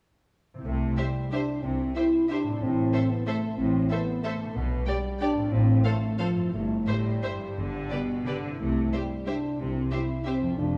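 A ringing, fingerpicked concert harp opens this excerpt of a festive, sweeping orchestral ballroom waltz in C major, its arpeggios sitting in the background from 0.5 s. Almost at once, at 0.6 s, a mellow French horn section holds sustained chords up front, over a clear chamber cello section and a rich, distant double bass section sharing the bass. At 1.0 s the upper strings arrive: a close, smooth violin section carries the melody, a second, more distant violin section adds a lush line beneath it, and an intense viola section fills in accompaniment in the background. The waltz moves in 3/4 at 164-200 BPM with a rubato feel, passing through C, Am, G/B, F/A, C/G and G before settling back on C. The bowed strings sing with vibrato, and a moderate scoring-stage reverb with small-room ambience lends the ensemble a sense of space.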